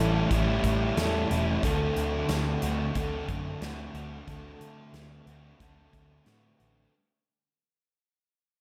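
A short, wistful slice of hazy shoegaze and dream-pop rock at 91 BPM opens on an up-front overdriven semi-hollow guitar riff with reverse reverb, a thick, distorted fuzz guitar riff thickened by analog chorus, and a round, foam-muted picked electric bass, while a shimmering, octave-doubled twelve-string acoustic guitar fingerpicks arpeggios in the background with subtle chorus, delay and a touch of finger squeak. A huge arena drum kit with a punchy kick, medium-tuned snare and hi-hat enters at 0.3 seconds, its natural big-room sound adding weight as the harmony moves from A7 to D7. The whole passage is fading out inside a dreamy mix soaked in plate reverb.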